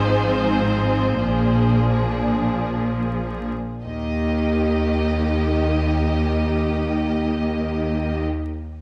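The recording sits in a wet recital-hall reverb, as if captured in a church or concert hall, with vinyl crackle running beneath it. This short excerpt from a slow romantic movement for string orchestra is lyrical and serene, moving in free time and slowing down through its opening 3.8 seconds. A bowed violin section carries the melody with an even, vibrato-rich tone, while a second, lush violin section sings an expressive line below it. Violas supply a focused accompaniment, and double basses anchor the bass with a smooth top, joined by a cello section set in the background. The harmony passes from Fm7/Ab to Bb7 and settles on Eb at 3.8 seconds, where the music moves into its second section.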